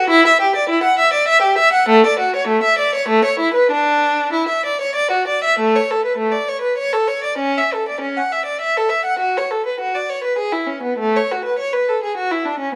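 Classical, baroque-style suite movement for unaccompanied violin, dance-like and serene, moving in triple metre at 100 BPM with a supple rubato feel. A single bowed violin plays throughout, its tone rich, smooth and even with vibrato, sitting up front in the mix and reaching from A3 to F#5. Close, detailed microphones capture the player inside a moderate recital-hall reverb, and the harmony shifts to a new centre at 5.6 seconds in this fragment of a longer piece.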